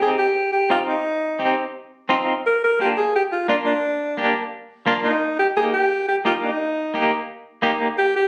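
A warm alto saxophone with vibrato and a smooth top carries a fiery, passionate Latin melody at 173 BPM, up front beside a bright, clean, picked semi-hollow electric guitar with tremolo that accompanies over Cm, Bb and Eb until 7.9 seconds, the saxophone bathed in plate reverb in a moderate studio room captured on a phone, in this short excerpt cut from a longer piece.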